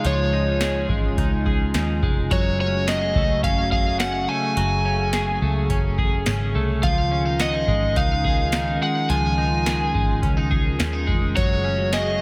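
An up-front, overdriven slide guitar carries the melody with delay over this ethereal, floating dream pop cut in Db major at 106 BPM, moving between Dbadd9 and Gbmadd9. A bright, twangy twelve-string electric guitar plays arpeggios through lush chorus and delay, while a warbling, nostalgic tape-like pad holds detuned, lo-fi chords with chorus and its own reverb. A dark, round, foam-muted picked bass and a booming analog drum machine with deep kick, crisp snare, metallic hats and tambourine ground the piece in a straight 4/4, all under a light reverb.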